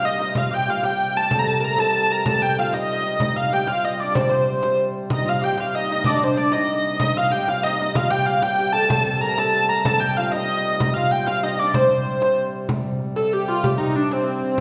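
Wet, ringing reverb from a church or concert hall surrounds this driving, mysterious medieval dance in 6/8, cut from a longer piece. A dark, wheel-bowed hurdy-gurdy carries the melody up front with an airy, woody tone, while a deep, fretless oud plucks a double-strung second line until 12.3 s and a reedy, breathing pedal harmonium holds a boxy drone. A small, bright frame drum played with hard hands adds close, dry percussion throughout, and the dance moves into a new section at 12.7 s.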